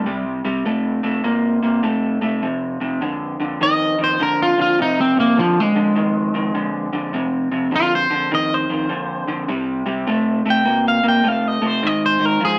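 A swung 4/4 groove at 102 BPM, with its eighths lilting at 65%, carries this brooding, mournful blues cut from a longer piece. One electric guitar at the edge of break-up plays a twangy, picked melody from F3 to G5, while a second guitar through a small old amp lays down a lo-fi, compressed riff from F2 to Bb3, coloured by lush chorus. Both guitars sit up front in a moderate studio reverb across all 12.6 seconds, moving through C5, Fm and back to C5 before landing on Ab5 at 11.8 seconds.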